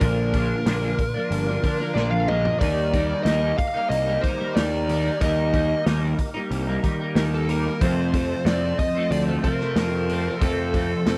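Trippy and mysterious, this short psychedelic rock excerpt moves at 92 BPM in a straight 4/4, cut from a longer piece and tuned slightly below standard pitch. A dark, fuzz-drenched lead guitar carries the melody with distortion and slapback echo, sitting up front beside a bright, twangy twelve-string electric guitar whose double-tracked riff swirls through a rotary speaker. Underneath, a round, overdriven picked bass anchors the low end, while a fat tonewheel organ, very quiet in the mix, holds sustained chords with key click, percussive attack and a slow rotary spin. A vintage acoustic drum kit with a punchy kick and rolled-off top plays hi-hat, snare and toms in a small, natural room, dropping a fill at 2.0 seconds. The harmony moves from Bb to Eb at 2.6 seconds and on to F at 7.8 seconds, all wrapped in a light studio reverb.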